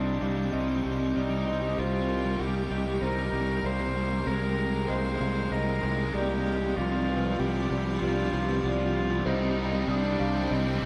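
Cathartic and brooding, this rock passage at a straight 4/4 builds steadily across its whole span, cut from a longer piece and bathed in a dreamy, reverb-soaked hall. A growly, fuzz-laden fingered bass sits up front holding a single low note, while an overdriven semi-hollow guitar with analog chorus churns out a riff. Over them, a bowed cello carries the melody with a pure, floating sul tasto tone and a tape echo trailing behind it. Filling the space are an icy, crystalline glass pad with chorus holding sustained chords, a felt-muted upright piano playing soft, intimate arpeggios through lush chorus and tape echo, and a very quiet, lo-fi electric guitar through a small old amp adding slightly broken-up arpeggios. The harmony moves from C minor through chords over a steady C before returning to C minor at 9.3 seconds, where a bright, crunchy overdriven guitar with ensemble chorus joins with its own riff.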